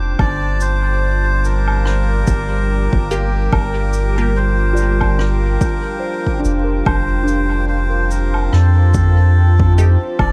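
Bathed in studio reverb and vinyl crackle, this hazy, spacious ambient dub excerpt in G minor moves at 72 BPM with a lightly swung 16th feel, as a dark, evolving pad with a slow attack holds sustained chords from Gm7 to Fadd9 at 6.9 seconds beneath soft FM bell arpeggios carried on tape echo, a glassy texture of drifting overtones sits far back, and a round, up-front sub bass anchors the low end, while from 0.2 seconds a reedy, breathy melodica sings through dub echo over a punchy, overdriven electronic kick and a natural-sounding woodblock, cabasa and rim click with a rolled-off top, and a muted, resonant, very quiet filtered chord stab flickers in at 3.1 seconds.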